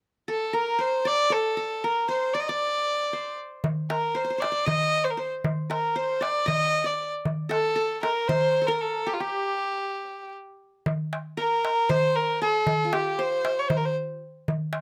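The violin stands out most, a single bowed player placed up front with a rich, nasal bite, an airy bow and light vibrato, carrying the melody of this melancholic, hypnotic Turkish makam ensemble piece, cut from a longer work, in 7/8 at 232 BPM counted in eighths. Beneath it the qanun plays a second line in the same range, its fingerpicked triple strings sounding bright-edged and acoustic, set lower in the mix. The darbuka enters at 3.6 seconds, a small metal-shell drum struck with hard hands, crisp, high and up front, with a compressed, saturated edge. After a break from 9.1 to 10.9 seconds, the music settles into C makam hicaz, and the violin drops out at 13.9 seconds while the drum carries on to the end. Moderate studio reverb surrounds the group, and the whole has the rough balance of a home demo.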